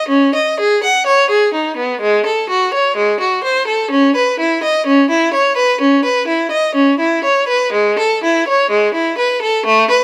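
A single bowed violin carries this radiant, serene baroque-style suite movement alone from 0.0 to 10.0 s, its warm, focused tone shaded with vibrato and a smooth top across a range from G#3 to F#5. The playing moves in 4/4 with a flexible rubato feel, and close, detailed microphones place the violin up front within a light reverb. The passage is cut from a longer piece.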